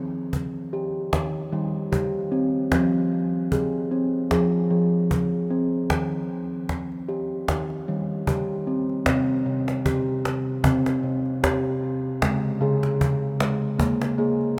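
A round, ringing steel tongue drum, played with rubber mallets and sitting up front, spins gentle, hypnotic arpeggios between C3 and Ab4 through a diffuse ambient delay in this meditative world piece at 76 BPM with a light sixteenth-note swing. A woody cajon with faint snares opens at 0.3 s, just ahead of the drum's entry at 0.7 s, and the whole excerpt floats in a wet cathedral reverb. The harmony moves from Eb and Fm into a second section at 9.1 s that settles on Absus2.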